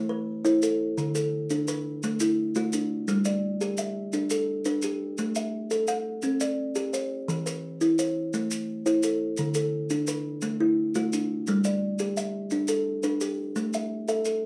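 Set in 12/8 at 114 beats per minute, counted in dotted quarters with a straight feel, this southern African traditional piece turns on a hypnotic, rippling mbira-style interlocking cycle in an equiheptatonic tuning centred on A. A kalimba carries the music from the first moment, spinning arpeggios from D3 up to the top of its range in a plucked, woody tone with a hollow-box resonance and a thumbnail attack. Its notes are short, dark and smooth, sitting up front in the mix. Maracas join at 0.5 seconds, adding a grainy yet mellow acoustic shimmer that sounds close at hand, though they sit lower in level beneath the kalimba. The harmony circles through Am, D and G before passing through open A5, C5 and E5 shapes and returning to the same cycle. A short, wet studio reverb places the pair a little further back in the room, and this passage, cut from a longer piece, ends on an open A5 near 13.6 seconds.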